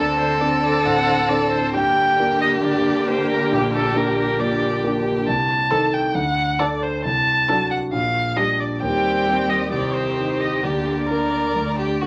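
A quick, lively and graceful classical-period movement for piano quintet in G minor at 135 BPM, this 12.1-second passage cut from a longer piece opens on a D7 chord and ends on a bare D5. An up-front single warm violin carries the melody with vibrato and a focused, smooth top, while a close, even second violin adds a second line and the cello supplies another lower line in the background with expressive portamento. The viola adds soft-attack accompaniment in the background, the concert grand anchors the texture up front with a deep bass, and a moderate large studio reverb gives the ensemble a rich, roomy glow.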